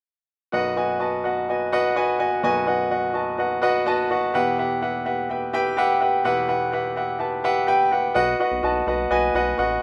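A rough home-demo sound with a moderate studio reverb frames this uplifting, anthemic pop excerpt in B mixolydian at 126 BPM, where a clear, intimate baby grand piano with audible action noise and long sustain carries the accompaniment up front from 0.5 seconds through chords of B and Emadd9, joined at 8.2 seconds by a quieter, glossy, retro chorused synth bass with a mellow filter pluck.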